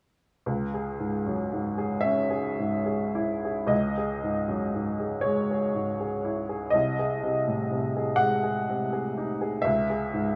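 A clear, woody upright piano, slightly detuned and up front with long sustain, plays a wistful, melancholic romantic nocturne alone in 6/8 with free rubato, moving from C#m to G#/B# at 6.7 seconds and back to C#m at 9.7 seconds in a moderate recital hall reverb, a brief passage cut from a longer classical piece.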